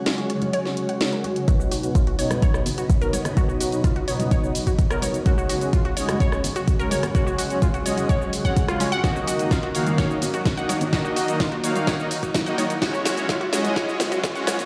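A deep, tape-warm electronic kick drum sits up front from 1.5 s in this hopeful, uplifting progressive house build-up, cut from a longer piece, alongside a house kit with a cracking snare, hi-hat, rim click and shaker, while overdriven congas sit in the background. Smooth, detuned supersaw stabs with a low-pass filter and digital delay pump through a filter sweep, joined by crystalline wavetable pluck arpeggios with chorus, an ethereal, granular pad with octave-up shimmer, a brief glassy FM bell melody at the opening, and a very quiet riser from 6.7 s. A drum fill arrives at 9.0 s as the chords move through F#sus2, Badd9 and D#m, the mix heard through a large studio reverb with the character of a big sound system in a bare room.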